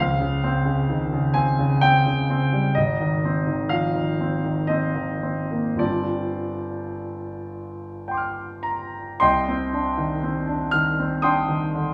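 A clear, up-front concert grand opens this short cut from an impressionist classical piano piece, setting a nocturnal, hazy mood in a rubato 3/4 that moves between 52 and 68 BPM in C minor. Playing solo across a range from G1 to F6, the piano's deep bass and open tone sit in a wet recital hall reverb as the harmony drifts from Dbmaj7#11 through Ab6 to G7sus4. At 9.2 s a new passage begins on Cmadd9, and the clip ends at 11.9 s.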